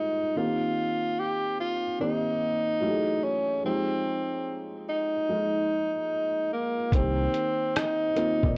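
Melancholic and hazy, this short lo-fi hip hop excerpt moves at 73 BPM in 4/4 with a swung sixteenth-note feel in C minor. A clear tenor saxophone carries the jazz-style solo melody up front from the first second, its subtone and soft attack giving a gentle, scooped delivery softened by a low-pass filter. Beneath it, a felt-muted upright piano plays mellow, boxy accompaniment with audible action noise, dulled further by cassette tape and its own low-pass filter, over chords moving from Cm7 through F#m9 and Fm9. At 6.9 seconds the groove arrives as a round, dark dub bass and a compressed, pitched-down sampler-style kit join, the kit's thumpy kick, hi-hat and rim click sounding muffled and re-recorded in a small room. The whole mix sits in a wet studio reverb with worn, warbling old tape and drifting pitch, deepening its hazy, melancholic quality.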